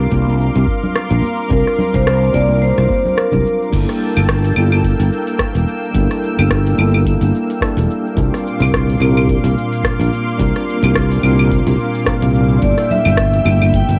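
This sunset chillout cut from a longer piece has a wistful, warm, swung 4/4 feel, with a growly, punchy fretless electric bass up front, a mellow tine electric piano comping through analog delay, and a lush, detuned sawtooth pad holding sustained chords under chorus and plate reverb. A deep, dry electronic kick and a produced R&B kit of metallic hi-hat, rim click, claves, shaker and crash share a tape-warmed cassette sheen, while ringing congas sit close but in the background during the opening seconds and again near the end. A bright, metallic vibraphone struck with hard mallets carries the melody from 1.5 s and returns at 12.6 s, as the harmony sways between C9sus4 and Gm69 in a lightly reverberant home-cassette sound.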